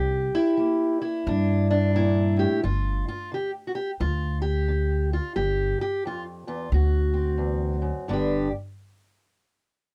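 Gritty and swaggering, this acoustic country blues fragment swings in 4/4 as a dark, boxy parlour guitar carries the fingerpicked melody beside a woody pizzicato upright bass, both up front in a dry, close 1970s-style studio sound, moving from C7 through G5 and D7 before landing on G at 8.1 seconds.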